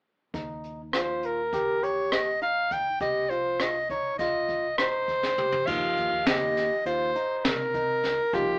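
This is a bright, driving progressive instrumental excerpt in 9/8 at 203 BPM, counted in eighths, with a straight feel in Eb mixolydian. At 0.3 s the band starts together. A barky tine electric piano plays clean arpeggios through a combo amp, a deep, round fingered electric bass sits low, and an up-front brush drum kit adds dark cymbals, a high-tuned snare and a boomy kick. At 0.9 s a breathy soprano saxophone takes the solo melody, close and intimate with a soft, whispered attack and a pop-style delivery. A drum fill leads into a new section at 5.7 s, where a dark, mellow concert grand piano joins quietly in the background as the harmony returns to Ebadd9 after a stretch on Cm. The band plays live in one room with moderate studio reverb, and the whole take carries an AM radio sound.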